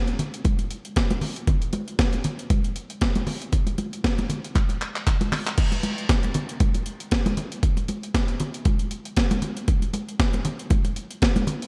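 A gritty, overdriven breakbeat kit with a thumpy kick, medium-tuned snare, hi-hat, handclaps and crash cymbal sits up front in this danceable, swung funk groove, joined almost at once by bright, thin-skinned, damped congas played with hard hands and kept close and dry, while a lush hall reverb lends the whole mix a dreamy haze and a drum fill at 4.6 seconds leads into the second section of this short cut from a longer piece.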